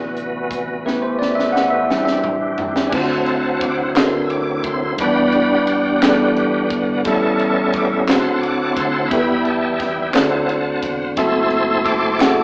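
A slow gospel groove in 6/8 at 58 beats per minute, with a straight feel, carries a hopeful, reverent mood through this short cut from a longer piece. A bell-like tine electric piano sits up front, taking a solo at the opening over chords like D13 and G69 while the crisp fusion drum kit plays a fill from 0.9 to 2.9 seconds. At 2.9 seconds a reedy tonewheel organ, up front with key click, chorus vibrato and a slow rotary speaker, takes over the lead for the rest of the passage, moving through D7, Em7 and A7 before closing on F#m7b5. Underneath, a round, punchy fingered electric bass stays in the background, and the drums pair a high-tuned snare and tight kick with dark cymbals. A very quiet group handclap joins at 4.0 seconds, and the whole band sounds as if playing live in one room, bathed in a wet large studio reverb yet filtered through an AM radio tone.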